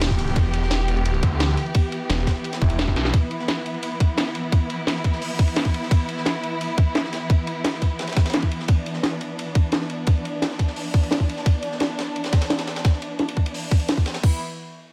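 A small, close room gives this futuristic, mechanical slice of dark technical drum and bass a tight sound, cut from a longer piece. A lush, bowed studio string section sustains shadowy chords throughout, its vibrato expressive and its top smooth, pumping under a sidechain. An aggressive, growling saw bass with a resonant moving notch sits up front at the start and drops out at 3.1 seconds, just after a faint electronic swell at 2.6 seconds and a drum fill at 2.9 seconds. The drums stack three layers: an overdriven, tight electronic kick at the front, a produced drum and bass kit with a cracking snare, bright hats and crash, and a gritty, saturated breakbeat kit with a high-tuned snare, ride and rolled-off cymbals. A filter sweep runs across the drums for the whole passage as the harmony holds on E minor before settling onto a bare E power chord at the close.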